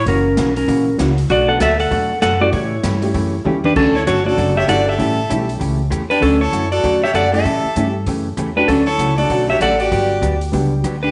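Swung eighths in 4/4 drive this playful, down-home western swing cut from a longer piece, where an up-front clean lap steel guitar with slide, volume swells and slapback echo carries the melody over woody pizzicato upright bass, a compressed hollow-body jazz guitar, a jangly, detuned honky-tonk upright piano in the background and a polished big-band drum kit with dark cymbals and a punchy kick, whose fill at 3.5 s ushers in a focused, bowed fiddle with light vibrato on the second line at 3.6 s, the band sitting in a small echo-chamber room with a soft, rolled-off top.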